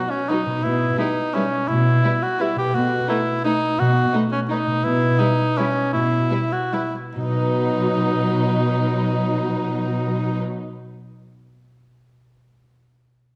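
In a flexible, rubato triple metre that slows from 4.3 seconds, this elegant, sweeping classical excerpt opens with a close, up-front cor anglais carrying a second line over ringing, fingerpicked harp arpeggios. At 0.3 seconds the strings join: a dark violin section holds the melody and a focused violin section adds a second line, both lush and in the background, while an expressive viola section with portamento fills in the accompaniment and a rich, even cello section enters on the bass at 0.6 seconds. The harmony moves from B to Em/B and back to B, all set in a wet scoring-stage reverb with a dark production.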